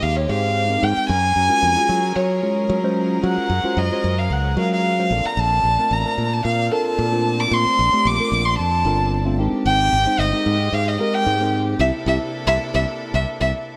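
A straight 4/4 groove drives this slick, funky jazz excerpt, cut from a longer piece. A single bowed violin carries the melody up front, its tone dark and woody with vibrato, yet it still sounds somewhat distant. Beneath it, a bright, punchy fingered electric bass holds the low end with a direct, modern sound, while a mellow tine electric piano, clean and coloured by a phaser, adds accompaniment from 0.3 seconds. A rich chamber string section sustains chords in the background, earthy and close with light vibrato. The harmony moves through major-ninth chords before a band accent lands at 11.8 seconds on a C13, and the mix sits in a moderate plate reverb with a bright 1980s-style digital production.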